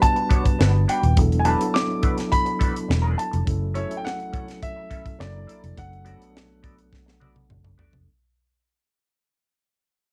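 A grand piano with audible action noise carries an intimate melody over mellow, clean tine electric piano accompaniment and a tight, dry funk kit with a high-tuned snare, both tape-worn, as a dark, slightly broken-up guitar riff with wah and lush chorus slips in at 0.2 seconds and a round, foam-muted bass enters up front at 0.6 seconds, giving this smooth, bittersweet 1970s-style soul fragment at 104 BPM a dry, homespun cassette sound with faint mains hum, drifting through Gmaj7, E9sus4 and F#m7 while fading out the whole way and closing on a drum fill from 6.9 seconds.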